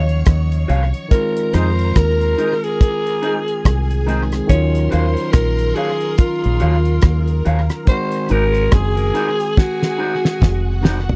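A dry, close 1970s-style studio sound with light reverb frames this longing, bittersweet lovers rock reggae excerpt in Eb dorian, moving at 71 BPM with a swung sixteenth feel over Ebm9, Fm7 and Ab7 chords. A raspy, growling alto saxophone carries the melody with vibrato, scooped notes and tape echo, while a swirling, phased string machine holds a sustained second line and a barky, lightly overdriven tine electric piano supplies accompaniment. Underneath, a round, foam-muted fingered bass and a damped 70s drum kit with a fat snare sit up front, a slightly broken-up lo-fi electric guitar adds stabs from 0.7 seconds, and the drums close with a fill starting at 9.6 seconds.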